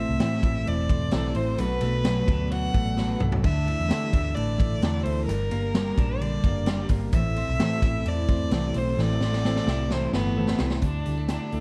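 Breezy and bright, this clip of jangly indie pop moves at 130 BPM in D mixolydian, with a smooth, rich violin carrying the melody over a full-bodied fingerpicked steel-string acoustic guitar sitting in the background and a twangy, compressed twelve-string electric guitar whose arpeggios carry a warbly pitch drift. Underneath, a dark, round, foam-muted picked electric bass anchors the chords as they pass from Am through Bm7, Dsus2 and Gm. A raw garage drum kit joins at 0.2 s, sounding gritty, distant and roomy with a punchy kick and high-tuned snare, and adds fills at 3.0 s and 9.0 s, all wrapped in small room ambience and vinyl crackle.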